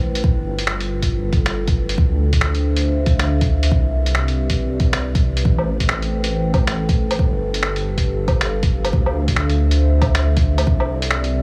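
Steeped in studio reverb, this rainy, melancholic future garage excerpt at 138 BPM with swung 16ths layers a moody, chorused analog pad and a rumbling, detuned sawtooth bass held up front, both with sidechain pumping, alongside a deep electronic kick heard in a large room and a muffled, pitched-down, overdriven sampler kit of finger snaps, hi-hat and woodblock heard in a small room, all moving through G7, Dm7, Cmaj7 and Am7.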